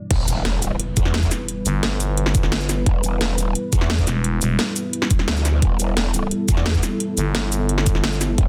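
Dry, dense and heavily limited, this aggressive, futuristic dark technical drum and bass excerpt at 174 BPM in E minor drops in at 0.1 s with a background electronic impact, a knocking layered kick and a tape-warm kit of cracking snare, metallic hats, cabasa and crash dulled by low-pass filtering, while a bright, saturated, wobbling growl bass with formant filter and chorus sits up front, a thick FM growl bass enters at 1.7 s and returns at 7.2 s, and a deep, moody, detuned sawtooth pad with a sub octave, slow attack and sidechain pumping holds sustained chords beneath.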